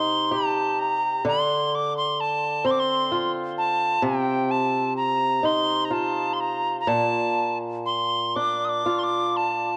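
A bright wooden whistle carries the melody up front, its airy, close-miked tone marked by a chiff on tongued notes and an unsteady vibrato that lends the line a longing, haunting quality. This is a Celtic slow air in 6/8, moving at a rubato pace of roughly 39-43 BPM in dotted quarters, and the whistle sings high in its range throughout the short passage cut from a longer piece. Beneath it, a fingerpicked swing-style acoustic guitar supplies the accompaniment with a dark, boxy sound that carries the grain of cassette tape. The harmony drifts from Cm to Dm7 at 1.2 seconds, settles on F5/C at 4.0 seconds, and arrives on Bb at 6.9 seconds. Both parts play together for the full 9.8 seconds of this single section, framed by light reverb and the intimate feel of a home recording on cassette.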